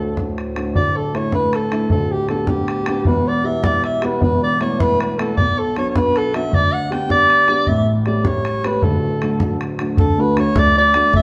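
A reedy, breathing pedal harmonium drone opens this bright, cheerful Celtic jig alongside a dark grand piano and a soprano saxophone, but the harmonium falls away by 0.8 seconds. The saxophone carries the melody up front in a classical style, its vibrato tone sounding distant and roomy despite its prominence. Beneath it, the piano supplies mellow, worn accompaniment in an intimate setting, with the clatter of its action audible. A damped, tight bodhran enters almost at once, close and dry, driving the straight 6/8 feel. At 10.0 seconds a woody upright bass joins with plucked steel strings as the tune moves into a new section. The band plays together in one large studio with a generous wash of reverb, and this short cut from a longer piece leaves off mid-flow.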